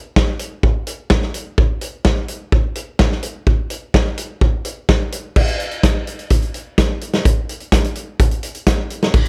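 Wistful and jangly, this short rock excerpt in a straight 4/4 feel features only a loose indie drum kit, acoustic and up front with a punchy kick, medium-tuned snare, hi-hat and crash cymbal, its natural small-room sound rounded by a rolled-off top and little reverb, playing from 0.2 to 9.3 seconds as the music moves into a new section at 5.4 seconds.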